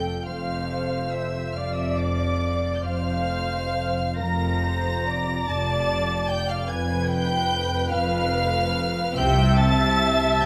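Classical slow romantic movement for string orchestra in F major and 12/8, lyrical and rubato at 42-50 BPM, where an intimate, sul tasto violin section carries the melody high above a second violin line with a smooth top, dark woody violas in lush accompaniment, and floating, pure cellos and double basses on the bass, all bowed, the violins and violas vibrato-tinged, in a moderate scoring-stage reverb, this fragment of a longer piece settling onto a C chord at 9.2 seconds.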